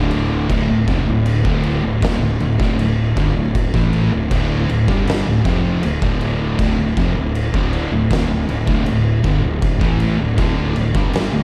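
A straight 4/4 pulse at 79 BPM drives this sludgy, heavy stoner and doom metal excerpt in D minor, led by an up-front, saturated, oversized low-tuned drum kit with a punchy kick, fat snare and crash cymbal, while two thick fuzz guitars, one very quiet and warm and one dark in the background, join a bright, double-tracked distorted electric guitar on a low riff over a growly, overdriven fingered fuzz bass, the mix framed by light reverb and small room ambience.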